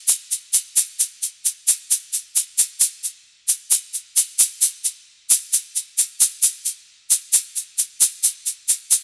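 A tube shaker opens at 0.1 seconds and carries this breezy, relaxed bossa nova fragment on its own, moving at 133 BPM in a straight 4/4 feel. Its grainy, bright acoustic tone sits up front in a small room with little reverb, giving the short cut a dry, close presence through to 9.0 seconds.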